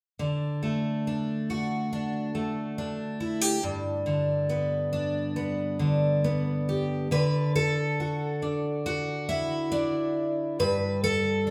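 A fingerpicked twelve-string acoustic guitar opens this gentle, hopeful solo folk fragment at 69 BPM, its bright, shimmering, octave-doubled jumbo tone sitting up front with audible finger squeak as it moves between D and G chords, all set in a lush large-studio reverb with a live-room feel.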